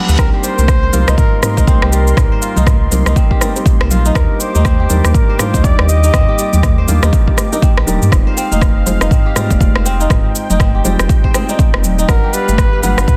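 Spiritual and earthy, this afro house excerpt moves at 121 BPM in C minor with a swung sixteenth-note feel, cycling through Cm7, Ebmaj7, Fm7 and G7. A deep, up-front electronic kick and a round sine sub bass anchor the groove, the bass pumping with sidechain, while a tape-warm afro-pop kit adds cabasa, rim click and toms, its snare softly clipped in a small room. Distant, high-tuned congas with thin skins sit in the background, and a crisp, ringing fingerpicked kora spins arpeggios through dub echo. A felt-muted upright piano, intimate and full of audible action noise, punctuates with echoing stabs beneath a detuned, warbling vintage pad that holds sustained chords with a soft attack and long release. Up top, a veiled, breathy trumpet in a bucket mute carries a jazz-style solo melody with light vibrato and dub echo, dropping out at 6.8 s and returning at 12.1 s over a dense, heavily limited modern master.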